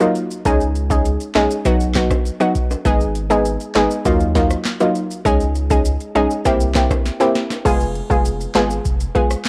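A detuned analog pluck sits up front, its round sawtooth and square-wave tone carrying a noise layer, a filter sweep and a moving notch, with chorus and sidechain pumping giving each fast-attack, decaying note a bouncy push between Gb3 and Ab4. This is a tough, bouncy dancehall cut from a longer piece, moving in a straight 4/4 at 100 BPM over chords such as Dbsus2, B, Abm and Ebmadd9, then C7 before a shift to Fdim at 7.7 seconds. A booming analog drum machine runs throughout, its deep kick, crisp snare, metallic hats, handclaps, rim click and crash cymbal overdriven and coloured by cassette tape, with a short room on the snare, clap and hats. A drum fill at 7.1 seconds leads into the closing section. Beneath it all, a thick, saturated sine sub bass enters at 0.5 seconds and holds sustained notes from F1 to Eb2 in the background, while close, bright acoustic maracas and timbales add quiet detail. 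The whole has the light reverb and faint mains hum of a home cassette recording.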